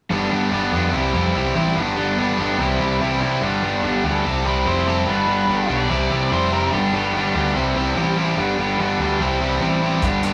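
A straight 4/4 classic rock groove swaggers and drives as a bright, compressed overdriven guitar and a warm distorted guitar push a riff over a G-to-C chord swing, with a growling, round overdriven bass up front beneath them. A dark octave-fuzz lead guitar sings a short melody from 4.1 seconds and then slips into a quieter second line in the background. A dry drum kit with a tight kick and hi-hat arrives only at 10.0 seconds, all inside the small, reverberant ambience of a band playing live in one room in this fragment of a longer piece.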